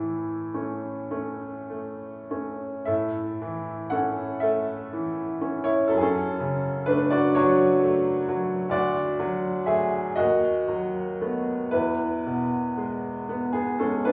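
Classical romantic nocturne for solo upright piano, dreamy and tender, unfolding in a slow, rubato 12/8 at 32-45 BPM in A major, its bright, woody tone with long sustain sitting up front in a wet recital-hall reverb as the harmony drifts from A through F#m, D and B7/D# to rest on E across this 14.1-second excerpt.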